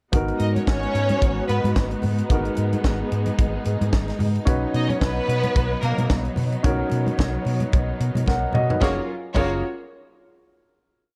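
Glamorous and joyful, this short disco piece moves at 111 BPM with a light sixteenth-note swing, built on a tight funk kit with a high-tuned snare and four-on-the-floor kick, a round, dark, amped hollow-body bass playing octave lines, and very quiet, ringing congas in a syncopated groove. A baby grand piano with audible action noise holds rootless chords and adds short fills, while a lush studio string section sustains a pad and a violin section, entering at 0.4 s, plays short bowed riffs with expressive vibrato, all three under plate reverb. The groove runs through G#m7 and Bmaj7 until a drum fill at 8.3 s leads into a final F#maj7 chord at 8.8 s, all wrapped in a dark production.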